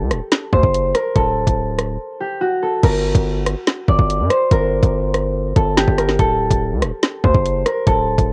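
A half-time drill groove at 143 BPM in 4/4 drives this dark, ominous hip hop excerpt, its electronic kit pairing a knocking kick and woody snare with bright hats, rim clicks and crash, overdriven and roughened by vintage 12-bit sampler grit. Beneath it, a distorted 808-style bass hits heavy and saturated, while a thumb-plucked concert harp rings out the melody in G harmonic minor through a low-pass filter, tape echo and cassette-tape coloring. The dry, home-cassette sound keeps every part up front; a break arrives at 2.0 seconds, and the harmony moves from D5 to Gm at 2.8 seconds and on to D at 6.2 seconds.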